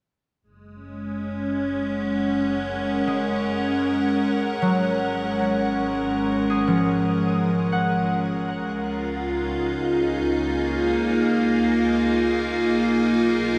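Serene and warm, this ambient passage drifts in a slow, straight four-beat pulse, taken from a longer piece. A bright, up-front wavetable pad holds sustained chords that evolve and morph, its detuned triangle tone shaped by a slow attack, long release, chorus and its own reverb. Beneath it, a close, bowed double bass section fades in from 0.4 seconds, its clear, biting ensemble sound focused and touched with vibrato, though it sits far back in the mix. A concert harp enters at 3.1 seconds with ringing, fingerpicked arpeggios, its acoustic tone carried on delay, and falls away at 10.9 seconds. A wet shimmer reverb with a 6.6-second decay bathes the recording, as the harmony glides from F#add9 through G#13sus4 and C# to B.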